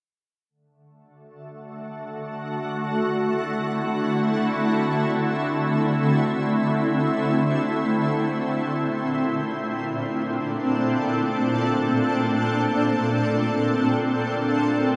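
Ambient music in free time, serene and warm, drifting through a long cathedral-like reverb with a dark production. A shimmering, ethereal pad sits up front, its detuned unison layers and octave-up sparkle softened by chorus and granular texture as it sustains chords from D7 to Bbmaj7 at 8.2 seconds. Beneath it, a very quiet, string-like drone with a tense, slightly noisy edge enters at 1.5 seconds, colored by phaser and gentle vibrato, in this passage cut from a longer piece.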